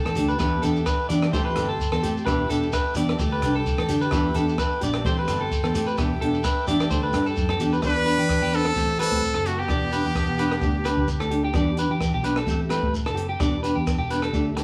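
A lightly swung 4/4 groove at 129 BPM drives this bittersweet highlife guitar band excerpt in E minor, with a compact cocktail drum kit laying down dry, dark hi-hat, rim click and a punchy kick beside a round, foam-muted vintage electric bass. A very quiet, distant agogo bell rings in the background while a grainy, compressed shekere adds texture. Up front, an electric guitar at the edge of break-up picks arpeggios, joined by a fingerpicked nylon-string guitar whose finger squeaks can be heard, and for the opening 7.8 seconds a reedy accordion holds sustained chords. The harmony circles through Em7, Am7 and Dsus4 throughout. From 7.9 to 11.3 seconds a brilliant, close-miked trumpet carries the melody with vibrato, while a raspy, growling alto saxophone plays a second line further back. The band sounds live in one stone room with moderate reverb and studio ambience.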